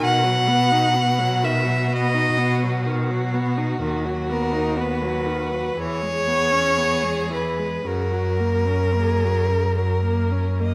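Played with a flexible rubato in a slow 4/4, this excerpt from a romantic string quartet movement unfolds with a lyrical, tender mood. The first violin carries the melody with a dark, woody tone and vibrato, sitting further back in the balance than the second violin, whose focused, smooth-topped line sounds up front and full. Beneath them, the viola supplies warm, expressive accompaniment with vibrato and portamento. The cello anchors the bass with a rich, even sound that also sits forward in the mix. All four bowed players sound together throughout the passage as the harmony moves from B through B/D#, C#m7/E and onto F# at 7.9 seconds, framed by a moderate recital hall reverb.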